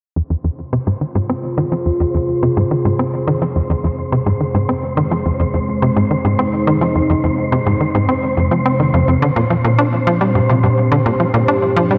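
At 0.2 seconds a tight, punchy sequencer bass riff and a swirling, detuned analog pad enter together, opening this hypnotic, mysterious passage of ambient space music, cut from a longer piece, in F dorian at 106 BPM in a straight 4/4. The driving bass sits up front, its nasal sawtooth and square-wave tone shaped by a fast-attack filter pluck and tape echo. The bright pad holds sustained chords through phaser and chorus, and both the bass and the pad carry a filter sweep throughout. At 0.8 seconds an airy, breathy, wind-like noise texture drifts in, its dark sine-based tone bathed in its own reverb. At 1.8 seconds a very quiet analog drone joins low in the register, a pulse-width-modulated tone with slow attack and long release. The harmony rests on Fm before moving to Gm near the end, and a lush hall reverb lends the mix depth.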